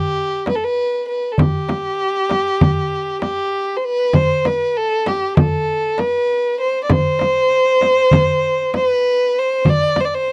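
In a straight 9/8 at 196 BPM counted in eighths, this passionate, festive Turkish makam ensemble excerpt sets a dark, intimate solo violin up front, bowed sul tasto with light vibrato, a soft attack and a smooth top, carrying the melody between G4 and D5, while from 0.5 seconds a small, high clay-shell darbuka and a deep, large frame drum, both played with soft hands, sit close and dry behind it in a dry 1970s-style studio sound.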